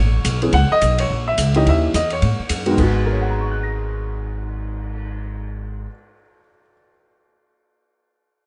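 A moody, swinging jazz piano trio excerpt in G# minor at a brisk 214 BPM, where a warm, up-front baby grand carries the melody across a broad range, a woody pizzicato upright bass holds the low end, and an open kit with dark cymbals and a boomy kick joins at 0.2 seconds and drops out at 5.0 seconds, all within a light reverb over chords moving from A through Badd9, A#dim and D#7b9 to G#m7.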